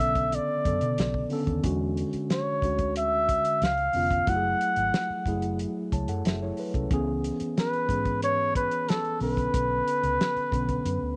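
Cinematic and smooth, this short passage of lush 1970s-style soul features a breathy flugelhorn in a jazz-style solo, with light vibrato, scooped notes and a slapback echo. Behind it, a mellow, clean tine electric piano supplies rich chords such as Bm9, E13 and F#m9, over a round, punchy, foam-muted fingered bass and a dry, dark soul drum kit with a fat snare and tight kick. Light small-room reverb frames the sound, and the clip is cut from a longer piece.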